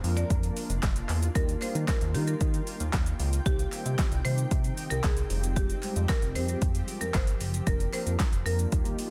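A dense, heavily limited modern mix in a digital ambience opens this euphoric, upbeat dance-pop excerpt, cut from a longer piece and moving at 114 BPM in a straight 4/4 in Eb major. Up front, an overdriven deep house drum kit, re-recorded in a small room, drives the groove with a deep kick, fat snare, metallic hats, handclaps and shaker, while a glossy, retro chorused synth bass built from pulse and sawtooth waves pumps beneath it with a moving notch. A woody marimba with medium hard mallets carries the melody in a dark, smooth voice, trailed by dub echo, as a brassy, round synth brass part with detuned sawtooth tones and a filter sweep supplies chorused, pumping accompaniment. Behind them, an ethereal, shimmering pad with an octave-up shimmer and granular texture holds sustained chords through built-in reverb and its own pumping. A very quiet, crisp group handclap joins at 0.8 seconds and drops out at 8.3, while the harmony moves from Bb/F through Ebadd9, Cm and Fmadd9 before returning to Bb/F.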